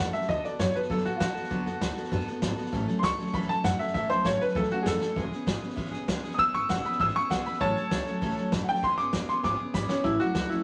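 Retro and rollicking, this brief rockabilly clip features a clear, slightly detuned upright piano taking the melody up front throughout, backed by a bright, full-bodied picked steel-string acoustic guitar, a woody, thumpy pizzicato upright bass on gut strings, and a natural-sounding vintage drum kit with a tight kick and medium-tuned snare that plays fills at 5.0 seconds and from 9.4 seconds, all set in a moderate studio reverb.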